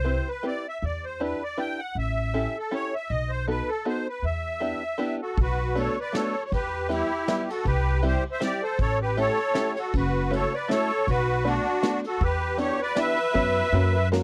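A bittersweet, nostalgic musette waltz in a lilting swung three, heard as a short cut from a longer piece, with a reedy, shimmering musette accordion carrying the melody up front over a plunky, twangy fingerpicked open-back banjo and a woody pizzicato upright bass. At 5.4 s the music shifts into a new section and a vintage brush kit joins in the background, its dark cymbals and rolled-off top adding punchy kick, snare and ride. The sound is dry and close, like a 1970s studio session with little reverb.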